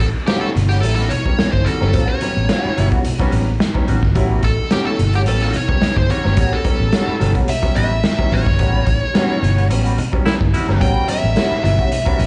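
A straight 4/4 funk groove at 108 BPM in A mixolydian carries this playful, funky passage cut from a longer piece, with a raw garage drum kit up front, its punchy kick, medium-tuned snare and hi-hat sounding acoustic yet rolled-off on top. A vintage muted fingered electric bass sits low and round between G1 and A1, dark and foam-muted, while quiet, low-tuned congas with thin skins add soft-handed texture from 0.3 seconds. Over this, a nasal lead guitar with a parked wah takes a solo across the whole passage, overdriven and picked between G4 and G5 with a slapback echo. Behind it, a hollow-body jazz guitar plays clean, picked accompaniment in the background with wah and slapback, and a clear, woody upright piano adds short-sustain stabs over an A13 harmony. A baritone saxophone briefly enters at 10.3 seconds with a smooth, vibrato-tinged E4 line, and the whole performance sounds like a live gig heard through a club PA, with light room reverb, vinyl crackle and a dulled top end.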